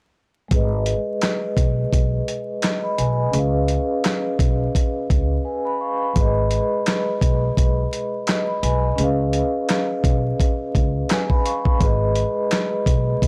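A dry, gritty recording with vinyl crackle and small-room ambience frames this dark boom-bap hip-hop excerpt at 85 BPM, swung on the sixteenths in G# dorian and moving between G#m and C#7. Up front, a dusty sampler-style kit hits with a thumpy kick, fat snare, hi-hat and handclaps, compressed and tape-warm, while a woody pizzicato upright bass with transformer saturation holds down the low end. A mellow, ringing vibraphone played with soft mallets and slow motor vibrato sits forward too, carrying a filter sweep through the first section, which closes with a break at 5.5 seconds, then playing on through the second section to 13.3 seconds.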